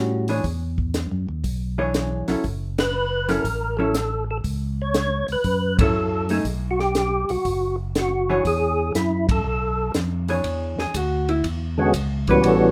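A swinging, soulful soul jazz organ trio excerpt opens at 120 BPM in E mixolydian, with a clean, compressed hollow-body electric jazz guitar comping over a fat, lightly overdriven tonewheel organ bass with key click, as a dry cocktail drum kit with a punchy kick, high-tuned snare and dark cymbals joins on hi-hat, ride, snare and kick. At 2.8 s a percussive tonewheel organ takes the melody, its third-harmonic percussion, chorus vibrato and slow rotary speaker sitting up front in a moderate club reverb, while the band hits accents together along the way. From 10.4 s the guitar steps out for a solo over an E13 chord.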